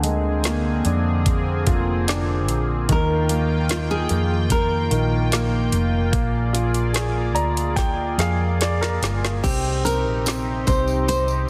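A straight, unhurried 4/4 groove carries this emotional, heartbroken pop ballad, cut from a longer piece. A smooth R&B drum kit sits up front with a knocking kick, a woody snare touched by soft clipping, and metallic hats. A round, punchy hollow-body electric bass anchors the low end with a dark, amped tone. A polished baby grand piano supplies the accompaniment while a shimmering, retro pulse-width pad holds sustained chords beneath it, its detuned, chorused tone slow to bloom. At 2.9 seconds a fingerpicked nylon-string guitar takes the melody with a full-bodied, deep classical voice over chords moving from Bb7/D to Ebadd9 and Bb7. Piano and drum fills lead into a new section on Cm at 9.4 seconds, where a jingly tambourine joins, close and dry in the background, all set in light studio reverb under a dense, heavily limited modern master.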